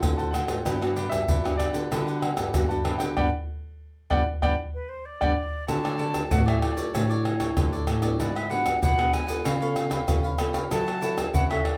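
A straight four-beat samba and choro groove opens the piece: a tight surdo, an egg shaker, a pandeiro and a tamborim played with soft hands sit up front, while a thumb-plucked nylon-string guitar holds the bass line. Over this a second, small-sounding fingerpicked nylon-string guitar and a crisp, picked cavaquinho fill in the seventh-chord harmony, supporting the joyful, playful mood. An intimate grand piano carries the opening melody, its action noise audible in the warm, natural tone, until it drops out at 5.3 seconds. A band accent and a drum fill lead into the second section, and an airy silver concert flute with a straight tone slips in at 4.7 seconds as a second line before taking a solo from 5.7 seconds. The ensemble plays live together in a moderately reverberant studio room, and the clip is cut from a longer piece.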